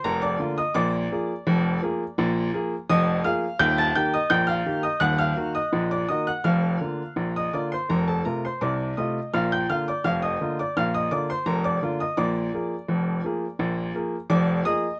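Cheerful and lively, this ragtime excerpt in 2/4 with a straight feel features a solo upright piano, clear and woody with long sustain, sitting up front through close, detailed microphones and light reverb as it moves from Bb through Eb, Ebm and F before returning home to Bb and closing on Bb7.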